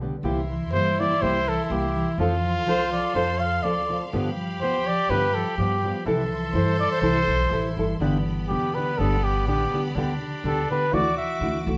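Heard as a band playing live in one room with a wet, short studio ambience, this festive, romantic mariachi excerpt in 2/4 sets an up-front mellow trumpet singing the melody with light vibrato above a punchy, smooth-topped second trumpet line, while dark thumb-plucked nylon-string guitar, ringing harp arpeggios, woody pizzicato upright bass and a distant, biting violin section holding lush sustained chords fill out the sound as the harmony moves to a new section at 8.0 seconds.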